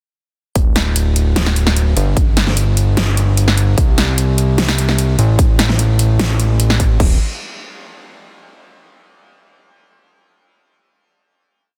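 A short future bass piece, dreamy and lush, opens straight into a drop at 0.6 s, where a fat analog bass, a punchy electronic kick and a big-room dance kit all arrive together in a half-time feel. The bass is thick and saturated, built from detuned sawtooth and square waves with a fast attack and sustained notes, pumping under sidechain compression while a filter sweep moves through it and its rhythm follows the chords. The layered kit brings a huge snare, metallic closed hats with rolls and crash cymbals, and the kick sits up front beside it, with both drum parts sounding re-recorded in a small room. The mix is dry, dense and heavily limited, with the bass and kick leading the balance over the kit. The drop runs until 7.0 s, and a final note rings out to the end at 8.6 s.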